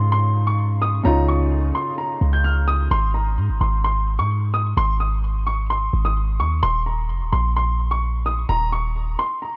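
A wistful, dreamy trap-style hip hop piece in Ab major at 129 BPM with a half-time feel opens on a boxy, dark concert grand piano melody with audible action noise, filtered and treated with tape echo, over a soft felt-muted upright piano accompaniment that stops at 2.9 seconds and a deep, boomy 808-style bass with a fast attack that carries on to 9.2 seconds, all within a small room and a worn cassette sound with warbly pitch drift.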